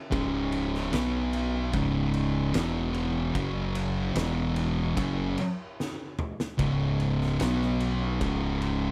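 Two thick fuzz guitars, one dark and one warm, sit up front grinding out a sludgy, brooding riff of power chords in this short stoner and doom metal clip, backed by a round, overdriven fingered bass and an oversized low-tuned acoustic kit with a fat snare, punchy kick and gritty, pumping stone-room sound that breaks into a drum fill at 5.8 seconds, all kept dry and close.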